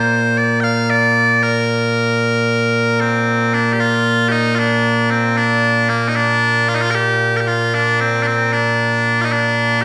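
A bright, piercing set of bagpipes sits up front in a reverberant church or concert hall, its continuous tone hanging in the air of the room. This short, ceremonial, stirring cut of traditional Scottish pipe music moves in a straight 6/8 pulse at 76 BPM in Bb major, the solo pipes ranging from Bb2 to G5. A brief opening phrase ends at 3.0 seconds and then returns, carrying on to the close at 9.8 seconds.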